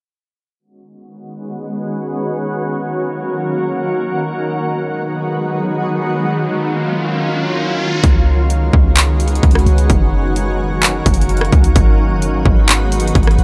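Atmospheric cloud-rap hip hop at 129 BPM in a half-time feel, blissful and floating, opens with a shimmering, ethereal ambient pad of sustained chords, treated with chorus, its own reverb and sidechain pumping, with a filter sweep moving through it and cycling through C#9sus4, F#6, G#m7 and D#m9. An electronic riser builds from 5.9 seconds until the drop at 8.0 seconds. There, an overdriven techno kit with a heavy kick, handclaps, hi-hat and rim click sits up front beside a deep, boomy 808-style bass, all in a dry, close-sounding mix, in this short cut from a longer piece.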